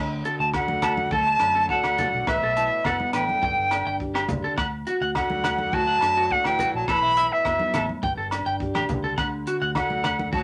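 Highlife guitar band music with a carefree, warm mood, heard in a short excerpt from a longer piece, with a bright, reedy silver flute carrying the melody up front, vibrato on its tongued notes, while an edgy tenor saxophone with scooped notes plays a second line in the background. A slightly broken-up, compressed electric guitar picks arpeggios over a dark, boxy fingerpicked parlour acoustic guitar and a round, amped fingered electric bass. A compact cocktail drum kit with a dry, punchy kick, hi-hat and rim click joins at 0.2 seconds, and ringing agogo bells and close, medium-tuned congas follow at 0.5 seconds, all set in a wet studio ambience.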